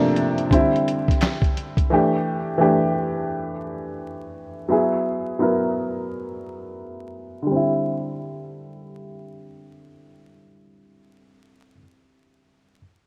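A dark upright piano carries this nostalgic, melancholic lo-fi hip hop excerpt, its mellow, woody tone sounding worn and slightly detuned, with audible action noise and an intimate, up-front presence under a low-pass filter. A filter sweep shapes the piano from 0.0 to 7.5 seconds as it moves through chords such as C13sus4, Emadd11 and Eadd9, settling back on C when a new section begins at 7.5 seconds. A compressed, pitched-down, sampler-style drum kit with a thumpy kick, medium-tuned snare, hi-hat and handclaps sits up front but plays only briefly, from 0.2 to 1.9 seconds, its sound muffled. The groove moves at 86 BPM in 4/4 with a 63% swing on the sixteenths, and the tuning rests at A4 = 442 Hz. A lush hall reverb and vinyl crackle wrap the rough home-demo mix in a hazy, faded atmosphere.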